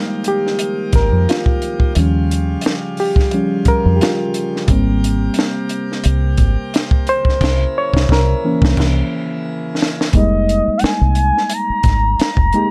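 A sultry, soulful neo-soul R&B excerpt in F minor at 88 BPM opens on a barky, lightly overdriven reed electric piano soloing over brilliant plenum pipe organ chords with a baroque chiff. A dry cocktail drum kit with a high-tuned snare and a round, foam-muted fingered bass soon join, swinging the sixteenths in a dark production. A drum fill and band accent run through the C7b9 chord from 7.4 seconds, and once the organ stops, a smooth, gliding lead of detuned sawtooth tones with vibrato and chorus carries the melody from 10.2 seconds.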